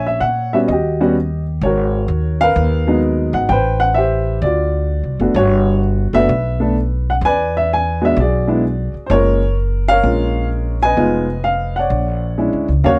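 A boxy, intimate upright piano, with its action noise audible, carries the melody from the first second alongside a thumpy, woody pizzicato upright bass on gut strings, both close and up front in this relaxed, sophisticated swing jazz passage at 128 BPM, cut from a longer piece, moving through rich chords such as G#m9, D7#9, Gmaj7 and F#maj7 before closing on A#7alt, all captured in a dry, close 1970s-style studio sound with light reverb.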